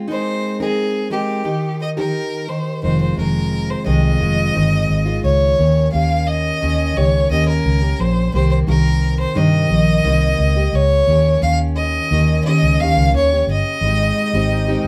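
A live, one-room sound bathed in wet studio reverb carries this sunny, heartfelt pop excerpt at 87 BPM in 4/4, where a full-bodied, picked acoustic guitar with finger squeak and a clear, biting violin with vibrato and airy bow open together, a dark, foam-muted, punchy electric bass arrives up front at 2.8 seconds as the chords move from Abadd9 through Fm7 and Cm7, and a shimmering, ethereal pad with chorus and its own reverb sits in the background from 14.2 seconds as the harmony lands on Abmaj7.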